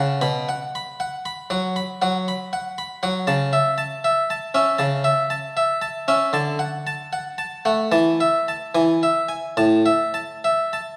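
Swaying in 12/8 at 77 beats per minute, counted in dotted quarters, the pulse stretches and yields with rubato so the beats fall unevenly, giving this baroque-style suite movement a dance-like, radiant lilt. A solo Italian-style harpsichord with one set of strings carries everything, its plucked tone round and mid-forward, ranging from A2 up to B5. In A major, the passage opens on a high B5 and moves through harmonies such as A over C#, D and A over E before touching E at 8.7 seconds and settling on A5 at 9.6 seconds. The instrument sits up front, yet the recording places the listener further back in a recital hall whose generous reverb, lasting 1.7 seconds, blooms around each note. This brief 11-second passage is cut from a longer classical piece.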